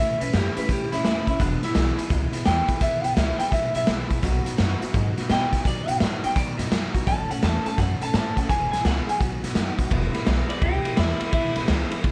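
An electric guitar played through a small old amp opens with a twangy, slightly broken-up melody and a touch of tape echo, over a bright, full-bodied picked steel-string acoustic guitar and a woody, thumpy pizzicato upright bass. At 0.2 seconds a raw garage drum kit comes in up front, with a punchy kick, a medium-tuned snare, hi-hat and ride cymbal; its sound is gritty and saturated, with a rolled-off top in a bright stone room. This is upbeat, retro rockabilly with a swung feel, moving through A, E and B chords beneath light reverb. At 9.9 seconds the music shifts into a new section where a clean electric guitar solo begins. The electric guitar stops at 11.6 seconds, while the acoustic guitar, bass and drums carry on to the end of this short cut from a longer piece.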